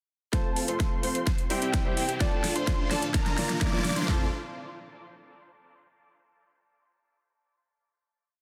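A euphoric festival progressive house piece in which a huge, detuned supersaw lead riff under a filter sweep, clear concert grand piano chords in a dotted rhythm, a warbling unison lead arpeggiating high above, a very quiet fat analog bass and punchy, overdriven big-room drums with a huge snare and metallic hats all drive a build from 0.3 seconds, joined by a lush phased pad in the background from 0.7 seconds and a faint riser from 2.1 seconds, before resolving on a final chord at 4.1 seconds in a lush hall and a dense, heavily limited master.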